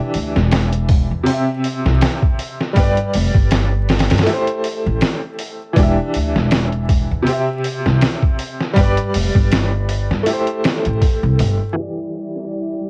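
Brooding and hypnotic, this trip hop piece moves at 80 BPM in 4/4 with a swung sixteenth feel, sitting in E minor and cycling through Em7, C, G and Am7. A sampler-style drum kit, compressed, pitched down and muffled, sits up front with a thumpy kick, a medium-tuned snare and filtered hats, while a woody pizzicato upright bass on gut strings adds a dark, acoustic low end. A bright upright piano carries the accompaniment from the start, its brilliant, short-sustained tone colored by tremolo, cassette tape and tape echo. At 11.8 seconds a filter sweep ushers in a dark violin section holding soft, intimate sustained chords with light vibrato and a smooth top, and at 12.4 seconds a reversed, detuned, granular swell drifts in with a dreamy reverb tail. The whole mix has the hazy feel of a home cassette recording in a small room, dulled by a low-pass filter and dusted with vinyl crackle, and it is cut from a longer piece.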